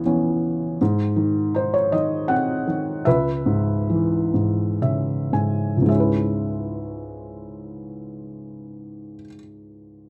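A felt-muted upright piano opens this brief excerpt alone, playing a dark, wistful classical piece in C# minor in 3/4 with a free, rubato feel. The tempo drifts between 52 and 82 BPM, and the playing slows down between 0.8 and 5.9 seconds as the harmony moves from C#m7 to G#7 and back to C#m7 at 3.1 seconds. The piano's tone is soft, muted and mellow, sitting up front and intimate, spanning from a low C#2 to G#5. A short felt piano fill arrives at 4.3 seconds, leading into a second section at 5.9 seconds before the piano stops at 10.1 seconds. Light reverb and a dusky production give the solo a hushed, close feel, like a private, lyrical moment lifted from a longer work.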